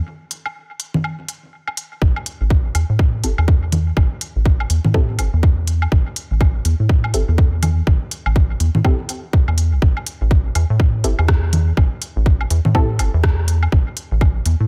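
A tight, up-front electronic kick and a rubbery, hollow square-wave bass with sidechain pumping both arrive at 2.0 seconds after an opening break of crisp hi-hats, rim clicks and tape-echoed woodblock and congas, driving this cool, hypnotic minimal techno excerpt in A minor at 123 BPM with swung 16ths, while a muted, detuned dub chord stab, treated with chorus and tape echo, drifts through a filter sweep in a dry mix.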